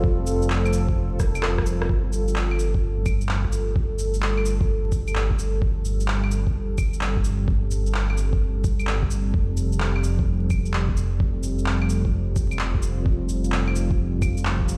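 A swung 4/4 groove at 129 BPM drives this melancholic, ghostly future garage excerpt, built on a muffled, thumpy, pitched-down kick and a tape-warm layer of electronic cabasa, shaker, handclaps, claves and rim click, with a drum fill leading into the second section at 1.9 seconds. Up front sits a rumbling, beating, detuned saw bass with sidechain pumping, beneath a deep, moody ambient pad of slow-attack sustained chords thickened with chorus and reverb, moving from F to G9sus4 and back to F at 9.3 seconds. The whole piece sounds as if played through a big sound system in a bare stone room, dusted with vinyl crackle.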